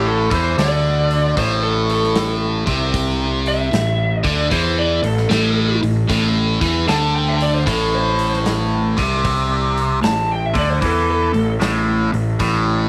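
Smoky and heavy, this blues rock and southern rock power-trio excerpt sits on A minor at a slow 76 BPM with a swung 4/4 feel, built on a biting, double-tracked overdriven guitar riff washed in phaser and a bright, punchy fuzz bass, both up front. Above them a dark, lo-fi lead guitar through a small cranked amp carries the melody with tape echo until 11.5 s, while a big, polished acoustic drum kit with a punchy kick, medium-tuned snare and hi-hat enters at 0.3 s. A small room reverb frames the whole performance, which stays on a single A minor chord throughout.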